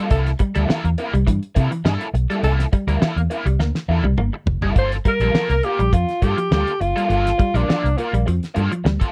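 A crunchy, overdriven guitar with wah and a clean electric guitar riff through lush chorus open this hypnotic, sly funk excerpt at 103 BPM in G dorian. They are joined at once by a smooth tenor saxophone second line with light vibrato, a round, foam-muted fingered bass and a damped 70s drum kit with a fat snare and tight kick, both bass and drums sitting up front over a C13 chord. After a drum fill at 3.6 seconds, the harmony moves to Gm9 and a breathy alto saxophone takes a vintage, jazz-style solo at 4.8 seconds, full of subtone and scooped notes, in a dry, close 1970s-style studio sound.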